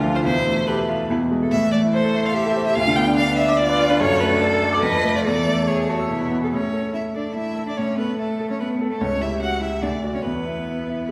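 Urgent and stormy, this quick classical-period movement for piano trio moves in a brisk triple metre with a straight feel, heard as a short cut from a longer piece. A bright grand piano carries the accompaniment across a broad span, its brilliant, open tone ringing with long sustain up front. Entering at 0.2 s, a single violin sings the melody with smooth, even bowing and vibrato, its rich voice placed forward in the mix. Beneath it, one cello bows out a second line with a smooth top and steady vibrato, sitting a little lower in level than the others. The harmony turns restlessly through diminished and dominant colours before settling into the home key at 4.0 s, and a new section opens at 6.5 s. A recital hall reverb bathes the trio, heard from further back in the room.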